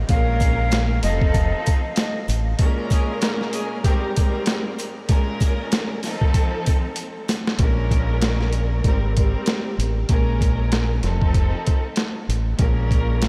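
Gritty and tough, this swung boom-bap hip-hop excerpt rides a compressed, pitched-down sampler-style drum kit up front with a thumpy kick and high-tuned snare, while a dark, round, punchy fingered electric bass drops out after the opening and returns at 7.6 seconds, a breathy, mellow jazz flute with tape echo appears only briefly at the start, distant bowed strings with vibrato and a cassette-tape tone hold the harmony throughout, very quiet jingly sleigh bells stop at 7.5 seconds, loose horn stabs sit in the background, and a drum fill leads into the second section over light small-room reverb.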